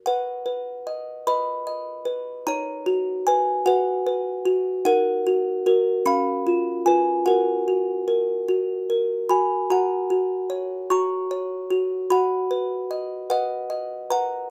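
Set in a moderate studio reverb, a small music box sounds delicate, tinkling and plucked, placed up front as it plays this tender, dreamy classical lullaby alone from C#4 to C#6. The piece moves in a gentle 6/8 at 50 BPM counted in dotted quarters, beginning in B major and turning toward F# major from 4.9 s through chords such as D#m, C#7 and F#. A new phrase begins at 9.7 s and settles onto B over F#, in this passage cut from a longer piece.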